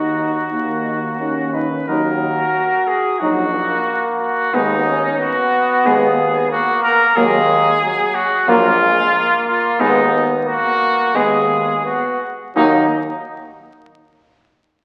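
Solemn and heroic, this classical brass quintet excerpt in Eb minor moves with a rubato feel around 90 BPM: a distant, roomy trumpet with light vibrato carries the melody up front over a dark flugelhorn second line and a punchy bass trombone, while a clear, soft-attacked French horn in the background and a warm trombone join the accompaniment at 0.2 s as the harmony sways between Ebm and Abm/Eb, all heard through wet scoring-stage reverb and the crackle of a very old 78 rpm record.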